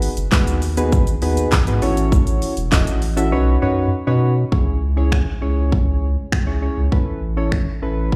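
Bittersweet yet confident, this dance-pop excerpt from a live club gig heard through the venue's PA pairs soft, round electric-piano-like synth keys, coloured by chorus, slapback echo and sidechain pumping, with a deep, saturated sub bass that pumps along, while a punchy, layered pop drum kit of kick, fat snare, brilliant hats, handclaps, finger snaps and shaker drops out from 3.3 to 4.5 seconds, and a jingly tambourine sits very quietly in the mix early on.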